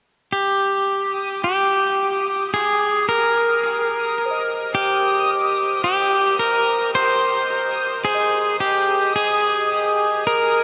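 Melancholic and spacious, this ambient fragment in 3/4 opens at 0.3 seconds with an up-front electric pedal steel guitar carrying a clean, bright melody through slide and volume swells, trailed by delay. From 1.1 seconds a reversed, detuned granular texture swells with long sustain, while muted, felt-like synth keys fade in from the background with warbling, vintage arpeggios through chorus and delay. The whole dreamy mix is soaked in a huge ambient reverb, drifting over Eb/G, Eb6 and Cm.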